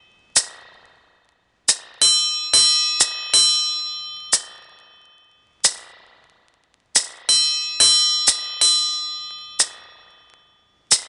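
The maracas and triangle carry this short trip hop excerpt, with maracas and a group handclap sitting close, dry and up front from 0.4 seconds to the end at 11.1 seconds. The mood is dark and hypnotic, moving at 91 BPM in 4/4 with a light swing on the sixteenths. A small room ambience and light reverb frame the percussion, while the recording itself has a gritty hardware character with transformer saturation and vinyl crackle. The top end is rolled off, giving the sound a dusty, muffled sheen. Cut from a longer piece, it stays in a single section throughout.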